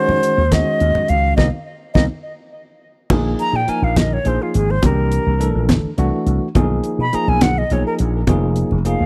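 Intense and slick, this short cut from a longer electric jazz fusion piece moves at 70 BPM in a straight 6/8, centered on Bb minor. A damped 70s drum kit with a fat snare, tight kick and rolled-off top sits up front beside a growly, punchy slap bass run through an envelope filter, while low-tuned congas with thin skins and hard hands stay in the background. A bell-like, clean tine electric piano carries the accompaniment under the silver concert flute melody, moving from Ebm7 to Cm7 as the band hits an accent at 1.4 seconds, capped by a drum fill. At 3.1 seconds the airy flute, treated with tape echo and played with vibrato and an unsteady, tongued edge, takes a solo over chords such as C7#11 and Bmaj7. The close, dry 1970s-style studio sound with a touch of reverb keeps the flute, bass and drums up front.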